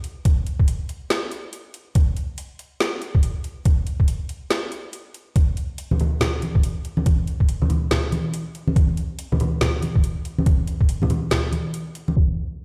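A half-time 4/4 groove at 141 BPM with a swung 16th-note feel drives this brooding, cavernous dubstep fragment, where a muffled, thumpy, pitched-down electronic kick and a layered garage kit with a woody snare and metallic hi-hats sit up front in studio reverb, soft-handed, thick-skinned congas join at 5.9 seconds, and the mix sounds as if played through a big sound system in a bare stone room under a low-pass filter before a brief break at 11.7 seconds.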